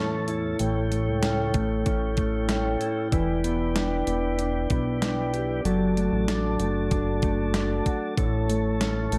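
Soaked in plate reverb, this dreamy, blissful dream pop excerpt at 95 BPM in A mixolydian places a soft, flute-like tonewheel organ, turning through a slow rotary speaker, up front on sustained chords, beside a dark, clean, fingered electric guitar playing arpeggios with subtle chorus and delay, a glossy, retro pulse-wave synth bass with a plucky filter, and a crisp, overdriven 8-bit drum machine with a thumpy kick that enters at 0.3 seconds, over a progression of A, Em7, D/F# and back to A.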